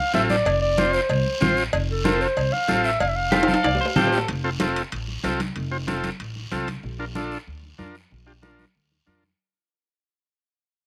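This excerpt of festive, danceable cumbia opens with a mellow clarinet singing the melody in F major at a brisk 188 BPM, carried by a cassette-tape haze that also colors the organ and guitar. Underneath, a vintage combo organ buzzes up front with heavy vibrato, while a woody pizzicato upright bass anchors the low end, bright damped congas and a raspy, distant guiro fill out the groove, and ringing timbales and cowbell sit close and dry until 6.8 seconds. A clean, picked semi-hollow electric guitar adds a brief compressed second line as a drum fill arrives around 3.3 seconds. The clarinet finishes at 4.1 seconds, and from 4.3 seconds the remaining band fades out, shifting from F to Bb near the end. The whole home-recorded cassette sound sits in a moderately ambient booth.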